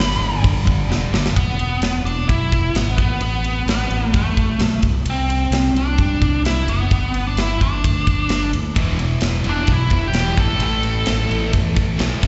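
Hard rock at 130 BPM in E minor with a driving, menacing feel, this live cut heard through a venue's PA puts a nasal, dark lead guitar with a parked wah, overdrive, slapback echo and analog delay up front for its melody until 11.5 seconds, opening with a solo as the tight metal drum kit closes that passage with a fill. Growly fingered electric bass and tight, polished drums with bright cymbals run throughout, while a double-tracked high-gain distorted guitar, a very quiet overdriven semi-hollow guitar and a scooped high-gain guitar play riffs in the opening moments and return together near 8.8 seconds, all over a hall-like ambience with a muffled top end.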